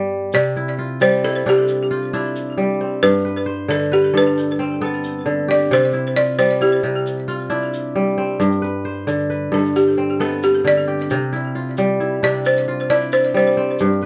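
A light reverb gives this joyful, flowing excerpt of West African string and xylophone music a gentle sense of space. The kora opens at 0.0 seconds with mellow, ringing, fingerpicked arpeggios spanning G2 to C5, sitting up front in the mix. At 0.3 seconds the balafon takes a solo melody between G4 and D5, its woody, buzzing tone struck with hard rubber mallets and colored by a boxy small room and a tape echo. A grainy, bright tube shaker enters at the same moment, adding quiet percussion from its own small room. The piece moves at 89 BPM in dotted quarters in a straight 12/8 feel. It stays in C major, alternating between C and G chords.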